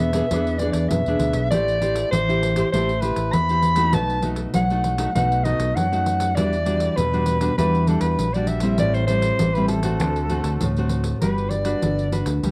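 A mellow soprano saxophone opens this sunny, playful samba and choro fragment in G major at 99 BPM, its scooped notes, soft attack and vibrato shaping a jazz-style melody colored by plate reverb and cassette tape, over a warm, fingerpicked classical nylon-string guitar with its own cassette grain and a punchy, directly amped fingered electric bass, while a jingly pandeiro played with soft hands joins at 0.1 seconds. The harmony moves from E7 through Am7, B7 and Em9 to Gmaj7, where the saxophone takes a solo at 11.2 seconds. The home cassette recording sits in moderate studio reverb, with the saxophone up front yet distant and roomy, the guitar also up front, and the pandeiro in a small room.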